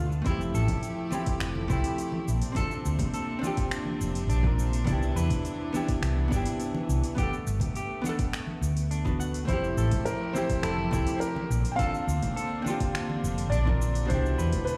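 Heard as if played on a big sound system in a bare room, this sunset chillout excerpt carries a large studio reverb and a blissful, warm mood in a straight 4/4. A round, dark hollow-body electric bass sits up front, joined by a soft, overdriven electronic kick and an overdriven R&B kit of finger snaps, metallic hi-hat and shaker, while congas struck with hard hands sound distant in the background. A clean, picked archtop guitar with tape echo plays accompaniment as a semi-hollow electric guitar adds fingered arpeggios, also through tape echo, and a close chamber string section holds earthy, biting chords with light vibrato. The harmony moves through lush ninth chords, from Fmaj9 to Bbmaj9, Cmaj9 and Gmaj9 before circling back. At 9.5 seconds an intimate concert grand piano enters with the melody, its deep bass, long sustain and audible action noise colored by tape echo.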